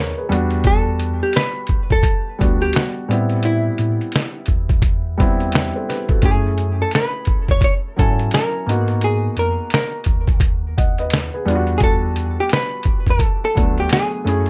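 Up front sits a compressed, sampler-style drum kit, pitched down and muffled, with a thumpy kick, a fat snare and hi-hat carrying a tape-warm, small-room character from 0.3 seconds onward. This nostalgic, hazy lo-fi hip hop excerpt moves at 86 BPM in 4/4 with a 62% swing on the sixteenths. From the very start, a soft, felt-muted upright piano plays the accompaniment with audible action noise and short sustain, its intimate tone dulled further by cassette tape coloring and a low-pass filter. Beneath it, a clean tine electric piano heard through built-in speakers takes the bass role with a mellow, warm sound. At 0.7 seconds a dark, picked hollow-body archtop guitar brings in the melody up front, filtered and trailed by analog delay, over a light reverb and a chord cycle of Em9, Am9, F#m9 and G#m9 before returning to Em9.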